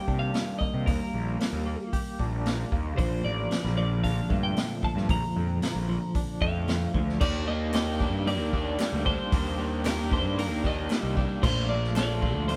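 Indie rock with a carefree, upbeat mood, this short excerpt moves at a moderate, straight four-beat pulse, with the band playing live together in one room under light reverb. A bright, twangy twelve-string electric guitar carries the melody, while a clean electric guitar with tremolo and a warm, overdriven electric guitar sit in the background playing riffs. Up front, a fuzzy, growly picked electric bass with overdrive drives the low end alongside a vintage acoustic drum kit with a punchy kick, medium-tuned snare, hi-hat and crash cymbal, its top end rolled off for a natural, studio-room sound. The harmony moves between Ebmaj7 and Bbmaj7, giving the piece a dreamy, open colour. At 7.7 seconds a crisp, close and very quiet group handclap joins in, lingering until 12.1 seconds as the second section unfolds.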